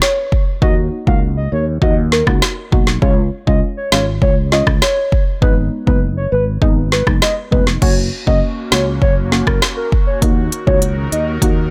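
A hollow, woody clarinet-like synth lead with vibrato carries the melody from the start, softened by chorus and phaser, over an up-front afro-pop drum kit with a deep kick, woody snare, crisp hats, rim clicks and crash cymbal in this sunny, bouncy dancehall excerpt at 100 BPM in F# major. From 0.6 seconds a round, punchy fretless electric bass and deep, nasal chord stabs with sidechain pumping move through D#m, C#, G#m and F#. At 8.1 seconds an airy, breathy pad with a vintage, warbling tone joins in the background, and the dry mix stays close and direct.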